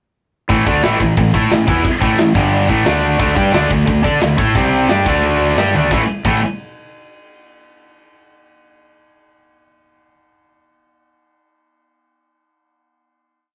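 A tight metal drum kit drives a straight 4/4 groove from 0.5 seconds, with bright cymbals, a tight kick and a fill at 5.7 seconds, in this short, relentless and heavy metal piece. Up front, a picked distorted guitar hammers out a power-chord riff while a scooped, high-gain second guitar sits in the background, and a growly, fuzz-overdriven fingered bass pushes eighth notes that double the riff. The whole band lands on a final chord at 5.9 seconds, captured with a rough rehearsal-room sound and moderate booth ambience.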